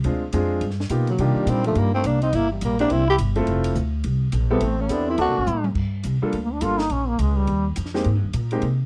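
Smoky and moody, this brief cut from a longer small-group swing and bop piece sets a clear, up-front concert grand piano, woody upright bass and a dry cocktail drum kit with dark cymbals and a high-tuned snare under a breathy, raspy growling tenor saxophone from 1.1 seconds, entering alongside a buzzy, metal-muted trombone that takes a solo from 5.8 seconds after a drum fill, all in a close, dry 1970s-style studio sound.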